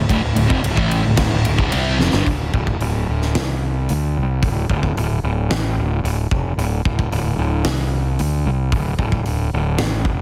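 Hard rock at 111 BPM, anthemic and energetic, opens with a crunchy, double-tracked overdriven guitar riff on a D5 chord that stops at 2.3 seconds, leaving a growly fuzz bass and a huge arena drum kit with a fat snare, punchy kick, hi-hat and ride to drive on after a drum fill at 2.0 seconds, all within a heavily compressed, radio-ready sound.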